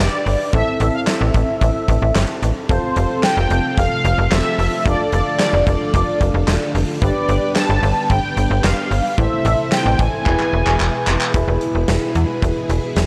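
A dry, gritty cassette-tape recording in a small room carries this driving, melancholic synth-pop fragment, cut from a longer piece in straight 4/4. A snappy, metallic FM slap-like bass sits up front with a punchy arena drum kit of kick, medium-tuned snare, hi-hat and handclaps in a hall, while soft, round electric-piano-like synth keys with chorus and phaser play the accompaniment. A dark, detuned synth brass with vibrato, phaser and analog delay carries the melody until 11.0 seconds, shimmering string-machine violins hold chords in the background from 2.7 seconds, and a drum fill arrives at 10.3 seconds as the chords turn to E.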